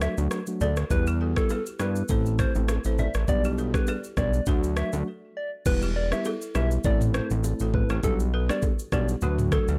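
A hypnotic, mellow afrobeats groove opens with a round, warbling FM synth lead carrying the melody through chorus, tremolo and plate reverb over a clean tine electric piano. Beneath them sit a fat, detuned sawtooth bass with a filter pluck and an up-front electronic afro-pop kit with a knocking kick, shaker, rim clicks, toms and crash. Soft-handed bongos and congas slip in very quietly at 0.2 seconds, and a woody, buzzing balafon riff with delay sits in the background from 0.6 seconds, before a brief break at 5.1 seconds leads into the second section of this dark, lightly reverberant production.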